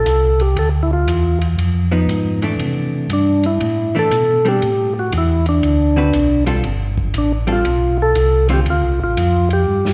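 A swung 4/4 groove in eighth notes drives this bluesy, soulful soul jazz organ trio, cut from a longer piece. A percussive tonewheel organ carries the melody in a middle register, its round, key-clicking tone shaped by second-harmonic percussion and a slow rotary speaker. A second tonewheel organ plays the bass line, mellow and dark, with chorus vibrato and its own slow rotary speaker; both organs stand up front. Further back, a muffled, lo-fi soul drum kit of hi-hat, kick, ride and snare sounds dry and rolled-off, with a tight kick and dusky cymbals, and closes on a fill at 9.7 seconds. A clean, compressed hollow-body electric jazz guitar picks accompaniment from 1.9 to 8.7 seconds over extended and suspended chords, while a moderate concert-hall reverb gives the trio a churchy space.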